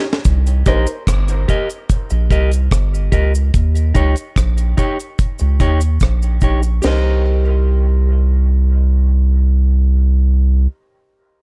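A straight 4/4 dub reggae groove opens on a drum fill, with a dry, up-front acoustic kit of tight kick, high-tuned snare, rim click, hi-hat and crash, joined by a small-room cabasa; both stop at about 7 seconds. Beneath them, a round, soft sub bass with a fast attack and long sustain carries the deep, heavy mood through Cm7 and Eb7, while a clean, fingered electric guitar plays accompaniment with dub echo. A mellow, woody upright piano sits in the background with boxy, short-sustain stabs that also carry dub echo, returning at 6.8 seconds as the drums drop out in this cut from a longer piece.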